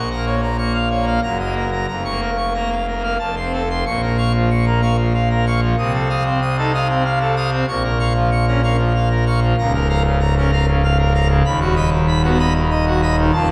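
The full organ fills a reverberant recital hall, its sound up front yet trailing a wet decay. This is a classical organ toccata in B-flat minor, dramatic and stormy, moving at 95 BPM in a straight 3/4. A solo pipe organ plays throughout the 13.5 seconds, with mixtures giving the tone a brilliant, majestic edge and a romantic voicing that spans from a deep Db1 up to Eb6. The opening passage circles B-flat minor through E-flat minor and F before settling into a new section at 3.9 seconds. From there the harmony presses through F7 and back to B-flat minor, then turns unexpectedly to B major near the end of this cut from a longer work.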